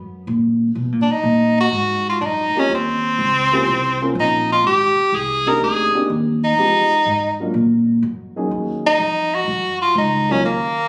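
Small-group swing and bop jazz in Eb minor, swinging and smoky at 124 BPM, cut from a longer piece and caught on a phone in a club-like room with light reverb, compression and a dulled top end. A woody pizzicato upright bass opens at 0.0 s, and an edgy, forceful tenor saxophone takes the solo up front from 1.0 s, full of vibrato and scooped notes and wrapped in plate reverb. A dark, mellow baby grand piano with audible action noise and short sustain joins at 2.6 s, comping through colourful chords such as Abmaj9#11, Fm7b5 and Gb69 before settling on Ebm9.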